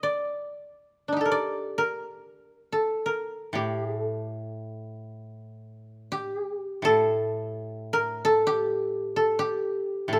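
A koto opens alone with an up-front melody between D4 and D5, its fingerpicked tone woody and dry, setting a calm, austere mood in free time in this short cut from a longer piece of Japanese traditional chamber music. At 3.5 seconds a second, quieter koto enters with a low A2 accompaniment, its sound warm and acoustic, and both continue to the close at 10.2 seconds. Close, detailed microphones capture the plucked strings, set in a light reverb.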